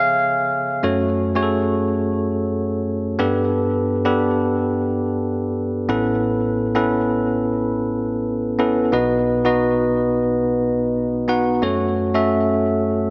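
A bell-like, clean tine electric piano plays alone and up front, through built-in speakers and a tape echo, across this urgent, moody 13.1-second pop excerpt, its lightly swung line moving from C#7 through F#m, Gadd9, Aadd9 and B back to F#m inside a lush hall reverb, with nothing above 7.6 kHz.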